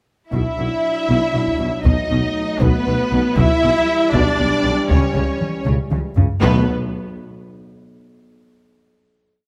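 Close, detailed microphones in a moderate scoring-stage reverb frame this dark, dramatic cinematic orchestral cue in B minor at 79 BPM in 6/8, where lush bowed violin sections double the tune at the octave over violas in unison, mellow French horns and tight trombones hold sustained chords in the background, cellos drive a bass ostinato alongside clear double basses and a solo tuba, hard-stick taiko pound a big drum ostinato with a fill at 5.7 seconds, round soft-mallet timpani strike single bass notes from 1.9 seconds, and the piece settles on a final chord from 6.4 seconds.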